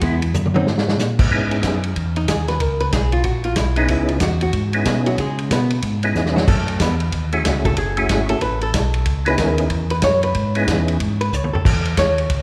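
Set in the moderate reverb of a church or concert hall, this late-night, bluesy swinging soul jazz organ trio excerpt pairs a clean, percussive tonewheel organ melody through slow rotary speaker and chorus vibrato until 11.0 seconds with a round, lightly overdriven organ bass up front, while a dark, compressed, picked archtop guitar takes a hollow-body solo from 1.3 seconds and a dry, mid-forward soul drum kit with dark cymbals and a tight kick adds brief fills.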